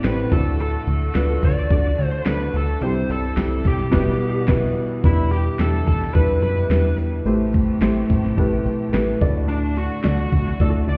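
A dark, woody upright piano with audible action noise sits up front in this dramatic, bittersweet piano-driven pop excerpt in E minor at 108 BPM, joined by a bright, overdriven electric lead guitar carrying the melody and a lush bowed string section holding chords in the background. A punchy, funky analog bass with a filter pluck and a layered electronic drum kit with a knocking kick, fat snare and crisp hats drive the groove, while a very quiet, jingly tambourine adds sparkle until 10.7 seconds. The band hits a shared accent from 3.9 to 5.0 seconds before moving into the next section, and the whole mix sounds muffled, as if heard through a wall, with a stone-room reverb.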